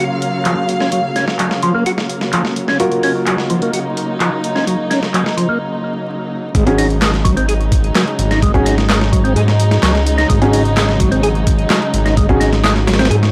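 A straight 4/4 breakbeat groove at 128 BPM drives this funky, playful breaks cut from a longer piece, built on a gritty, compressed sampler-style soul drum kit with a thumpy kick and medium-tuned snare sitting up front, joined at 0.4 seconds by an analog drum machine adding handclaps and hi-hat that sound re-recorded in a small room. Over a Gbmaj7 chord, a mellow, round tonewheel organ plays a riff with third harmonic percussion, chorus vibrato, slow rotary speaker, tube saturation and tape echo. A smooth, vintage grand piano adds stabs through a low-pass filter and tape echo, and both organ and piano carry a filter sweep through the opening. Beneath them, a dark, distant chamber string section holds bowed, expressive chords with vibrato and sidechain pumping. After a brief break, the drop lands at 6.5 seconds on Ab7sus4, where a fat, thick, detuned sawtooth bass enters up front with a fast attack and its own evolving filter sweep. 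Light reverb and digital ambience surround a dry, gritty hardware sound dusted with vinyl crackle.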